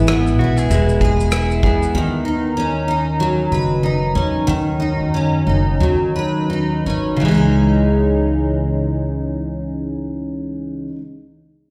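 A swung sixteenth-note feel in 4/4 carries this reflective, wistful acoustic pop fragment, cut from a longer piece. A loose indie drum kit with a punchy kick, rim click and shaker plays only briefly in a small, pumping room, dropping out at 1.9 seconds as the pace begins slowing. Up front, a full-bodied, jumbo steel-string acoustic guitar picks the accompaniment throughout, double-tracked with slapback echo. A clean, direct-recorded electric guitar adds compressed, scooped arpeggios with digital delay and slapback, stopping at 2.5 seconds, while a woody, dark pizzicato upright bass holds the low end. The harmony moves from E to Badd9 and settles on C#madd9 at 7.2 seconds, all heard as a live gig through the venue's PA with light recital hall reverb.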